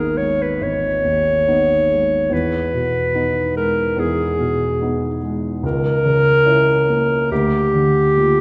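Elegiac and yearning, this brief cut from a longer romantic classical duo moves with a rubato sway as a bright, up-front clarinet sings the melody over a dark, mellow grand piano accompaniment with a smooth, vintage character. Both parts play throughout the 8.4 seconds, the piano reaching deep into the bass beneath harmonies that drift from G#m through Emaj7 to a diminished chord before settling on A#/D. A wet reverb with a 2.0-second decay gives the sound the spacious glow of a church or concert hall.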